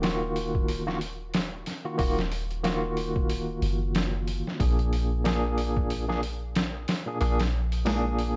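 A barky, lightly overdriven tine electric piano sits up front through a combo amp with tremolo and tape echo, moving from Ebmadd9 to Bb7 over a deep, round 808-style sine bass and a gritty, pitched-down sampler drum kit with a thumpy kick and compressed, tape-warm grit, giving this dark, melancholic trip hop excerpt in Eb harmonic minor a swung 92 BPM feel beneath a haze of vinyl crackle.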